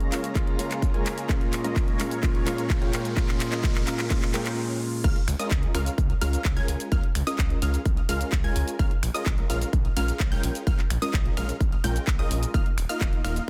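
An up-front, punchy electronic kick arrives just after the opening to drive this euphoric, powerful festival progressive house excerpt. It joins a pop drum kit of crash, finger snaps, handclaps, hi-hat and shaker, a menacing detuned saw bass in the background, and a sawtooth supersaw stab riff with a filter pluck and digital delay, both the bass and the stab pumping with sidechain. During the build-up, a dark, mellow baby grand piano and a lush unison pad with chorus, phaser and vintage 12-bit sampler grit carry Db6 and Bbm7 chords over a background riser and swell, until the drop lands at 5.0 seconds and a bright unison pluck arpeggio enters high above, later moving to Ebsus2.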